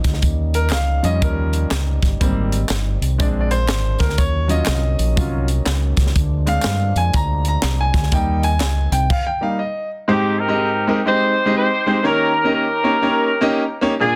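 Uptempo gospel at 122 BPM in 4/4 with a swung eighth-note feel, hopeful and uplifting, cut from a longer piece. A clear, smooth concert grand piano enters at 0.5 seconds and carries a solo over the opening groove, moving through chords from Eb7 to Abmaj7, Bb7 and Ebm7 before settling on Eb. Beneath it, a round, dark fingered electric bass sits up front with a crisp, airy fusion drum kit featuring a high-tuned snare, punchy kick, hi-hat and crash, while a tight French horn section holds soft sustained chords and very quiet tube shaker and group handclaps add texture. The band stops together around 9.1 seconds, leaving the piano alone for a moment. At 10.1 seconds a loose, vintage pop-style horn section takes the melody with light vibrato over Abmaj7 and Eb7, backed by the piano. The sound is a dense, heavily limited modern master with studio ambience.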